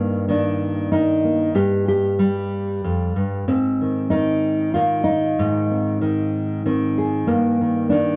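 A full-bodied, thumb-plucked nylon-string guitar with fresh strings and audible finger squeak sits up front, playing solo through a tape echo in this hopeful, nostalgic 8.2-second folk excerpt at 95 BPM in 3/4, moving from Eb/G through Fsus2 and Ab before returning to Eb/G, all within a moderate studio ambience and a dark production.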